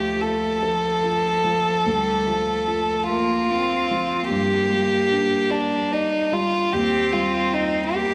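In a slow, rubato 6/8 at 49 BPM, this fragile, melancholic neoclassical piece in G minor, cut from a longer work, moves through Dm, Bbadd9/D, Gm and Ebadd9 over its 8.1 seconds. A single violin carries the melody up front with a sul tasto, airy bow and light vibrato, while one cello plays a pure, floating second line beneath it, touched by a slapback echo. A felt-muted upright piano gives soft, mellow accompaniment, and the whole sits in a wet echo chamber reverb.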